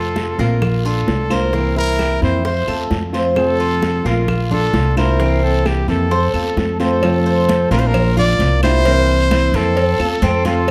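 A punchy, close-miked trumpet carries the melody up front, its scooped notes and vibrato setting a relaxed, sunny tone for this Cuban son and guajira groove at 131 BPM in F major. Beneath it, a dark, thumpy upright bass with gut strings plays pizzicato, also up front, while a full-bodied nylon-string guitar fingerpicks the accompaniment with audible finger squeak. A metallic Cuban tres adds picked arpeggios on its double strings, and a fingerpicked flamenco guitar traces a second line in the background. At 0.2 seconds, congas played with soft hands on a bright, thin skin come in alongside very quiet, tight, high-tuned bongos and cowbell and a raspy guiro, and woody, saturated claves follow at 0.6 seconds. The chords cycle through F, Bb and C7, and light reverb lends a gentle sense of space to this passage cut from a longer piece.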